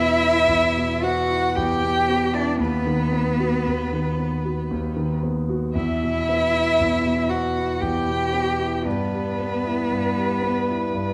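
A wet recital hall reverb with a 1.6-second decay surrounds this melancholic, solemn excerpt from a slow romantic movement for piano trio in E minor, moving freely at 57 BPM in 3/4. A focused, bowed violin with vibrato and a smooth top carries the melody, while a rich cello, also bowed with vibrato, sits up front on a second line. A warm concert grand piano with deep bass accompanies up front, with all three instruments playing throughout the 11.1 seconds as the harmony passes from E5 through B/D# and Em to Em/G.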